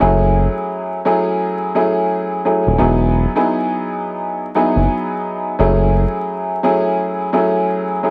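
Dark and reflective, this boom-bap hip-hop excerpt moves at 86 BPM with a swung 16th feel in F# dorian, as a clear, woody, slightly detuned upright piano, filtered and run through cassette tape, accompanies over F#m7, Emaj7 and back to F#m7, alongside a deep, nasal analog bass up front from the start until 6.1 s, with light reverb, a home-cassette sound and vinyl crackle.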